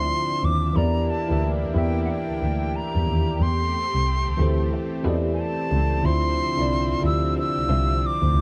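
A dark, warm production in a small room gives this introspective, smooth R&B excerpt in D minor at 91 BPM its intimate glow, with a swung 16th-note feel. An up-front silver flute carries the pure, soft-attacked melody with vibrato, while a bowed double bass sings close and expressive with vibrato and portamento beneath a worn, slightly out-of-tune tine electric piano and a lush, detuned unison pad thickened with chorus. From 4.7 to 7.9 seconds a slightly broken-up electric guitar adds a picked, compressed second line in the background, trailed by slapback echo, as the chords move from Dm9 through Em7b5 and Am7 back to Dm9.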